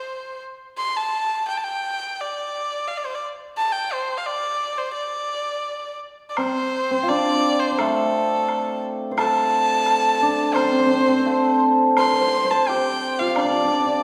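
A wet scoring-stage reverb, with a decay of about 1.7 seconds, places the listener farther back in the room for this wistful, graceful excerpt of Chinese traditional chamber music. Set in the D yu mode at 86 BPM in 2/4 with a rubato feel, the piece opens with a solo erhu, a single bowed player heard close and up front. Its tone is clear, nasal and earthy, with an airy bow, light vibrato and portamento, and it carries the melody across a range from A4 to C6. At 6.4 seconds a hammered dulcimer joins with a second line, its acoustic sound shimmering and ringing up front. A bright woodblock sounds in the background from that point until 13.5 seconds, giving a small-room touch beneath the two melodic instruments.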